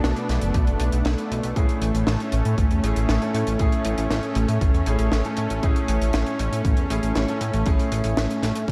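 Driving, moody synthwave cut from a longer piece, where a thick, detuned sawtooth pad holds sustained chords over a Bm7 to Amaj7 change, a glossy, up-front synth bass with tube saturation and sidechain pumping carries the low end, a warm concert grand piano adds chorused stabs with analog delay, a small, dark cocktail kit plays hi-hat and a high-tuned snare, and a punchy, layered electronic kick joins at 0.5 s, all soaked in a dreamy hall reverb.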